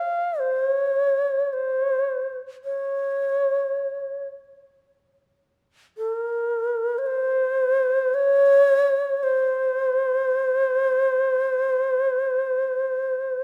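A reedy, airy long shakuhachi plays alone and up front between Bb4 and F5, its close-miked bamboo tone carrying vibrato and a breathy chiff, in a calm, austere excerpt of traditional Japanese chamber music set in a moderate concert hall reverb.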